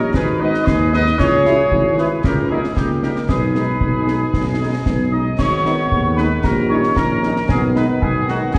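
Heard from further back in a concert hall with a lingering 2.1-second reverb, this short cut from a longer piece is a resolute, martial military-style march for wind band in G# minor, moving at 114 BPM in a straight 2/4. A dark, tight trumpet section carries the melody from a roomy distance, while a mellow tuba anchors the bass with a soft attack and the concert snare drum, concert bass drum and clash cymbals sound close and acoustic, the cymbals carrying a shadowy tone. Filling the middle are a close-miked euphonium with light vibrato and a woodwind section blended as a distant ensemble, both playing second lines, and a French horn section adds glowing accompaniment in the background. At 5.1 seconds an airy piccolo joins with expressive vibrato high above the band, and from 5.4 seconds a trombone section lays down soft, sustained chords behind everything else. The harmony keeps to G#m, C#m and D#7 shapes in classical style, and the repeated opening phrase returns at 5.4 seconds with a fuller sound.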